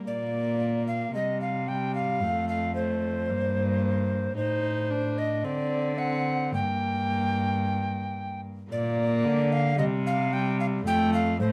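A mellow tenor recorder carries the melody up front, its airy, wooden tone marked by a crisp, chiffy attack and a touch of vibrato as it sings between C5 and G5. This short cut from a longer renaissance-style consort dance has a courtly yet rustic mood, moving at 111 BPM in a straight 4/4. Beneath it, a single bowed viola supplies the accompaniment with a reedy gut-string sound in period style, while one bowed cello, rich and also placed up front, holds the bass line. The harmony travels from Bb through C5, F and G minor to A diminished and D7, settling on G minor before the opening phrase returns at 8.7 seconds. Light reverb and a dark, warm production frame the trio, and lossy compression artefacts can be heard in the sound.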